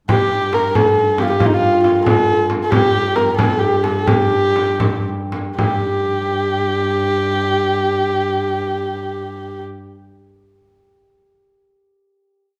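Melancholic and hypnotic, this short, complete Persian modal piece in 6/8 at 73-92 BPM, slowing from 2.7 to 5.6 seconds, sets a dark, intimate bowed kamancheh up front with an ornamented modal melody, light vibrato, soft attacks, portamento and an airy bow, while a shimmering, ringing hammered santur plays the same line with its own ornaments in the background, a clear, focused bowed double bass holds a distant G2 drone with vibrato, and a frame drum beats a low and high stroke pattern in a large room until 5.8 seconds, all heard through a wet recital hall reverb as the ensemble settles on a final note held to 8.9 seconds.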